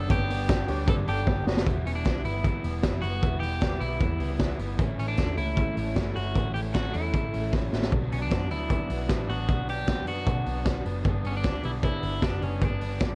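A straight 4/4 groove at 153 BPM drives this bittersweet, wistful slice of jangly indie pop in E dorian, carried by a raw garage drum kit sitting up front with a boomy kick, a high-tuned snare and a gritty, rolled-off top, plus fills at 1.3 and 7.5 seconds. Beneath it, a vintage foam-muted picked bass stays dark, round and punchy. A twangy, slightly broken-up electric guitar carries the melody through a spring reverb, while an overdriven, compressed guitar picks out accompaniment in the background and a bright guitar through a small old amp adds tremolo-laced arpeggios. For the opening 1.7 seconds, a woody, slightly detuned upright piano with audible action noise and a barely audible, shimmering string machine on violins colour the G chord before dropping away. The chords move through Em, A, Bm and back to G, and the dry sound carries a cassette-tape character.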